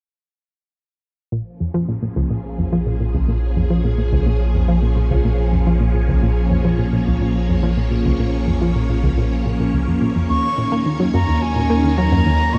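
A swirling, warbling string machine sits up front in this cosmic, hypnotic slice of sequencer-driven space music, holding sustained chords through ensemble chorus and phaser from 1.7 seconds. Beneath it, a round analog pluck with a bright, fast-attack, short-decay edge plays a repeating riff treated with chorus and delay, while a fat, saturated analog bass with a nasal, detuned tone anchors the low end; both begin at 1.3 seconds. A filter sweep runs across the synth arpeggio sound throughout, and the harmony rests on Bbm7 before moving to Ebm7. At 10.3 seconds an airy, reedy silver concert flute enters high with a straight-toned, tongued melody and softened highs, carried on its own delay. A long shimmer reverb and a dark, warm production wrap the piece in a deep, spacious haze.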